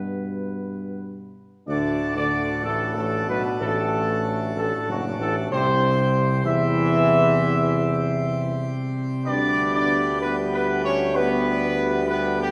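Classical and triumphant, this majestic passage in D major moves at a stately 64 BPM in 4/4. A tight, dark trumpet section carries the melody up front, while a French horn section and a smooth-topped trombone section hold sustained chords in the background, the horns with light vibrato. A roomy tuba, also with light vibrato, anchors the bass with a warm tone, and a brilliant pipe organ plenum with full mixtures joins at 1.7 s in baroque voicing. The harmony passes through G, D, C and G/D, all bathed in the wet reverb of a scoring stage.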